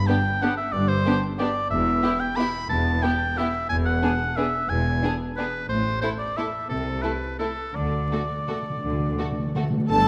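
A bright, up-front oboe carries a second line across most of this short cut from an orchestral ballroom waltz in 3/4, its light vibrato giving an elegant, sweeping air. Beneath it, a violin section sings the melody from the background, its soft attack and portamento lending a lush, expressive glow, while a second, more focused studio violin section adds a second line of its own. Clear, vibrato-rich violas fill in the accompaniment, and rich cellos with clear double basses anchor the low end with a smooth-topped, bowed foundation. The tempo sits between 160 and 198 BPM with a rubato feel, moving through G, E minor and A minor before landing on a D5 chord, where the timpani, struck with medium mallets and heard close, plays a fill from 7.8 seconds. At 9.9 seconds a pure, hollow concert flute and a mellow French horn section enter in the background, all set in a moderate concert hall reverb with a layer of vinyl crackle.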